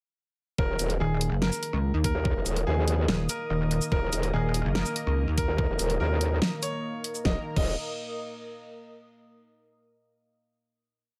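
A half-time beat at 144 BPM in 4/4 drives this short, chaotic and aggressive heavy wobble dubstep piece, with a knocking electronic kick and an up-front drum kit of huge snare, bright closed hats, shaker and crash, both tape-toned and layered. The drop hits at 0.6 seconds as a growling, saturated bass with a formant filter wobbles through modulated phrases of changing speed. A pulsing, heavy pluck wobble bass answers it until 5.5 seconds. Above, a clear, natural grand piano repeats a riff melody through tape echo, while a lush, airy unison pad holds thick, bright chords in the background, pumping against the beat. A deep, moody ambient pad with a sub octave, wave-folding and ring modulation slowly shifts its mellow chords and carries the final chord from 7.3 seconds. The mix is dry and dense, with the basses dominating.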